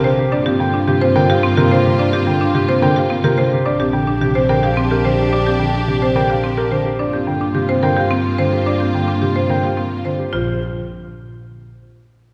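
Hypnotic and bright, this minimalist classical pattern piece in Bb major moves at 108 BPM in 3/4, with a warm, intimate piano carrying the melody over a dark, boxy second piano accompaniment, a mellow French horn second line in the background, lush bowed strings holding sustained chords, buzzing, woody marimba arpeggios up front under hard mallets, and a rich bowed double bass, all set in a wet concert hall reverb as Gm7 and Bb6 alternate before a Bb5 chord arrives at 10.3 seconds.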